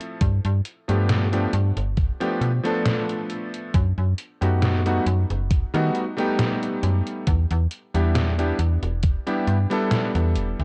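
A melancholic, hazy vaporwave excerpt moving at a slow 68 BPM in 4/4, with a slight swing on the sixteenths. A clear electric grand piano carries the accompaniment from the opening, its vintage, clangy low end softened by lush chorus and analog delay. A detuned 8-bit digital drum machine supplies hi-hat and a medium-tuned, tape-tinged snare bathed in gated reverb. At 0.2 seconds a snappy, metallic FM slap bass arrives up front, alongside a thumpy, overdriven electronic kick that drops out at 9.2 seconds. The harmony drifts from G7 through B7b13/F# to Em7, and the whole piece sits in light digital ambience with a cassette-tape patina.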